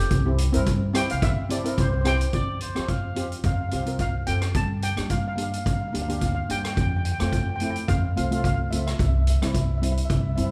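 Calypso in F major at 108 BPM with a light sixteenth-note swing, carefree and bouncy, where a shimmering lead steel pan carries the melody over a mellow double-seconds pan accompaniment, a woody, dark pizzicato upright bass and an up-front street-band kit of boomy kick, hi-hat and rim click, while a punchy vintage trumpet with vibrato and scooped notes adds a brief jazz-style second line from 2.3 to 3.3 s, heard in a moderate recital-hall reverb.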